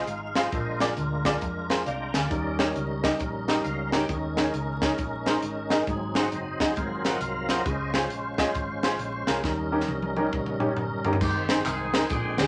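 A tonewheel organ through a slow rotary speaker with chorus vibrato holds full, clean chords and adds a fill at 3.2 s in this jubilant, hopeful uptempo gospel cut at 135 BPM in Ab major with a swung 4/4 feel, joined by a dark, mellow baby grand piano with audible action noise, a round, punchy hollow-body electric bass, and a polished, up-front drum kit with a high-tuned snare that plays a fill from 9.4 s before a distant, bright saxophone section and background tambourine and handclaps enter at 11.2 s, over moderate studio ambience and vinyl crackle.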